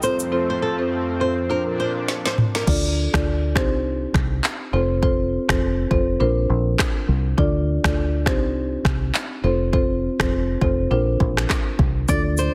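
Up-front marimba played with medium mallets provides accompaniment in this sultry, smooth afrobeats excerpt at 102 BPM with swung sixteenths, cycling through F, Bbadd9, Dm and Cm over an electronic afro-pop kit with a deep kick, woody snare, shaker, finger snaps, handclaps, rim clicks, toms and crash; a lush, warbling, detuned sawtooth pad and a fingerpicked flamenco guitar riff with tape echo open the piece, then after a drum fill a dark, round, foam-muted dub bass enters at 2.7 s, and the guitar returns briefly at 12.1 s, the mix framed by a heavily compressed radio sound and light reverb.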